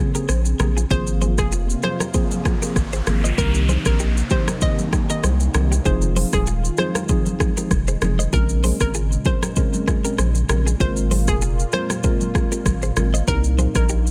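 Afrobeats at 97 BPM in F minor with a lightly swung sixteenth feel, sultry and hypnotic, built on an electronic drum kit with a deep kick, crisp hats, rim click and shaker, and a thick, saturated sub bass sitting up front, while faint, ringing congas add texture. A tine electric piano with medium tremolo, heard through a combo amp, carries the chords (Bbm9, Ab69, Cm7, Fm7), a smooth sawtooth pad with chorus and sidechain pumping sits in the background, and a bright, twangy clean guitar played direct through digital delay plays a riff. A hollow, bouncy square-wave pluck with chorus and delay carries the melody from 0.9 seconds, and an electronic noise sweep runs from 1.6 to 5.9 seconds in this section cut from a longer piece, set in a digital ambience.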